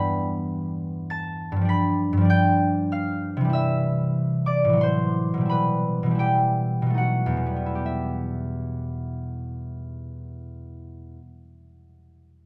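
Classical solo harp, heard in a short passage cut from a longer piece, carries a mysterious, wistful mood in E minor and 3/4 time. The rubato tempo drifts between 65 and 102 BPM, and the music slows from 2.6 to 7.8 seconds as the harmony moves through G7, C and a half-diminished chord toward B7 before settling on E minor at 7.8 seconds. The concert harp is the only part, fingerpicked and up front, spanning E2 to B6 with a ringing, warm tone. Light reverb gives the notes a gentle sense of space. The harp falls silent at 11.8 seconds, partway into a second section that begins on that return to E minor.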